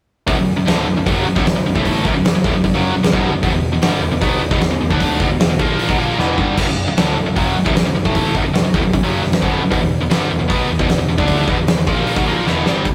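A straight 4/4 hard rock drive at 153 BPM, this swaggering, anthemic excerpt cut from a longer piece sets a huge arena drum kit with a fat snare, punchy kick, crashes, splashes and hi-hat up front beside a tight, bright, double-tracked distorted guitar riff moving between B5 and E5 power chords, while a growly overdriven picked electric bass sits in the background, drum fills land at 6.2 and 12.5 seconds, and a moderate stone room reverb gives the rough rehearsal-room recording its raw edge.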